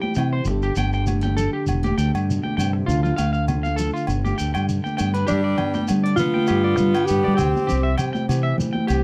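A dry, close 1970s-style studio sound with small room ambience frames this sunny, joyful highlife guitar band excerpt, moving at 100 BPM in 4/4 with a swung sixteenth-note lilt. From the start, a full-bodied, fingerpicked nylon-string guitar carries the accompaniment while a twangy electric guitar at the edge of break-up plays picked arpeggios through tape echo. The fingered electric bass sits up front, direct and amped, above high-tuned congas with soft hands and ringing agogo bells in the background, along with grainy shekere. At 5.3 seconds a breathy alto saxophone takes the melody up front with subtone and scooped notes in a jazz style, joined by a raspy, growling tenor saxophone on a second line with light vibrato, both stopping at 7.9 seconds. The harmony moves from Gsus2 through Dm and G, arriving on C near the end.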